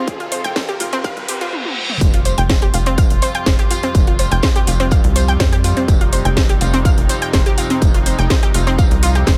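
A small, high-passed room sound frames this cinematic, hypnotic melodic techno excerpt at 124 BPM in 4/4, where a riser, reverse cymbal and filter sweep build toward a drum fill and the drop at 2.0 s. A distorted, up-front electronic kick and a techno kit with cracking snare, metallic hats and toms drive the groove alongside a tight, punchy sawtooth sequencer bass, while a round, detuned analog pluck spins bright arpeggios through chorus and tape echo. Distant, reedy bowed strings hold sustained chords over a Cm/F harmony and a very quiet, resonant drone with moving overtones; the strings, bass and pluck all pump to the kick, and a soft acoustic tambourine and snare join at the drop.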